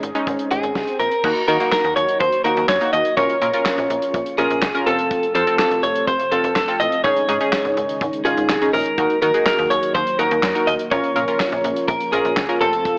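A straight 4/4 pulse at 124 BPM drives this melancholic, cool synth-pop excerpt in Bb minor, where a damped 70s drum kit with a tight kick, medium-tuned snare, hi-hat, handclaps and crash cymbal sits under a snappy, metallic slap-like FM bass and a punchy, funky sawtooth polysynth comp with chorus and a filter sweep. Up front, a clean, scooped electric guitar recorded direct carries the melody with subtle chorus, while a very quiet electronic swell passes between 0.3 and 1.2 seconds before dark, full-bodied string-machine cellos with ensemble chorus enter in the background at 1.2 seconds over chords moving through Ebm, Bbm and F. Moderate spring reverb and the character of a home cassette recording with an AM radio sound colour the whole.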